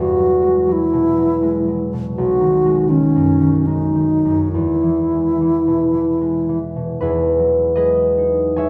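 In a rubato 3/4 at 67-84 BPM, this dreamy, luminous impressionist classical duo in E major, cut from a longer piece, sets a pure, hollow alto flute melody with vibrato and soft attacks over a ringing, thumb-plucked concert harp accompaniment spanning B1 to G#5, both up front in a wet concert hall reverb, until the flute stops at 6.6 seconds and the harp carries the closing Emaj9 alone to 8.7 seconds.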